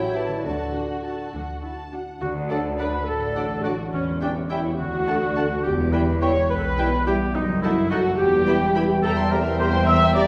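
Cinematic and magical with a quirky edge, this excerpt in D major moves at 70 BPM in a straight 6/8, as veiled, con sordino violins carry a high melody above a second muted violin line, over muted violas, cellos and double basses, a dark bassoon, ringing harp arpeggios and very quiet mellow French horn chords, before an airy flute ensemble, a warm oboe with vibrato and a clear clarinet join with second lines at 2.2 and 2.5 seconds, all bathed in the reverberant glow of a recital hall.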